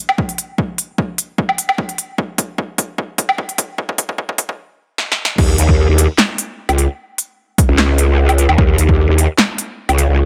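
This heavy, chaotic stretch of wobble dubstep, cut from a longer piece, opens at 0.1 s with a big-room dance drum kit: a punchy snare, crisp hats, handclaps, woodblock and crash cymbal, all overdriven and pushed up front. A layered electronic kick with its own overdriven punch soon joins. The first half is a build-up packed with drum fills under a filter sweep, with a slight swing on the sixteenths and a half-time feel. At 5.4 s the drop arrives as a growling bass enters low in the register, its detuned unison sine voices wobbling through a formant filter, saturated, compressed and thickened with chorus. This aggressive, sustained bass with a fast attack is the loudest part, and the kick falls away at 9.0 s. The drums carry the character of a large room, yet the overall mix stays dry and close, with a high-pass filter trimming the lowest end.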